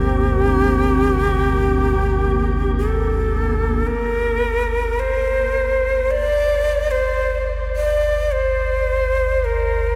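Dark ambient drone in free time and G minor, desolate and cavernous, where a breathy, bright bamboo shakuhachi with vibrato carries the melody up front across all 10.0 seconds over a deep, ominous rumbling drone, while a detuned, resonant sawtooth pad with chorus and a dreamy reversed granular texture in the background sustain G minor until 3.9 seconds, all bathed in a huge, wet reverb that keeps the shakuhachi echoing through the shimmer of this cut from a longer piece.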